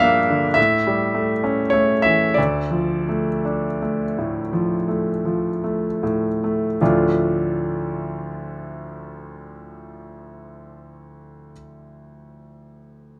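In a slow, rubato 6/8 pulse of about 25-36 BPM counted in dotted quarters, this romantic classical nocturne in D minor unfolds with a wistful, mournful air, easing further in tempo across its first 6.8 seconds. A solo grand piano, clear, natural and placed up front, carries everything from D2 up to G5, moving from Gm7 to A7 before settling on Dm at 2.4 seconds. Light reverb surrounds the piano in this short passage cut from a longer piece, with a new section beginning at 6.8 seconds.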